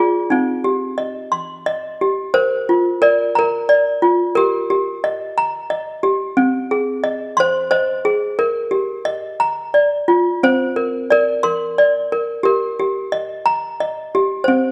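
Innocent and sleepy, this children's lullaby excerpt in Eb major sways in 6/8 at 59 BPM on a lone toy piano, its clanky, bell-like, slightly out-of-tune plastic-hammered tone sitting up front in a dark production with moderate recital hall reverb, moving through chords from Bb to Ab and back home to Eb by 12.5 seconds.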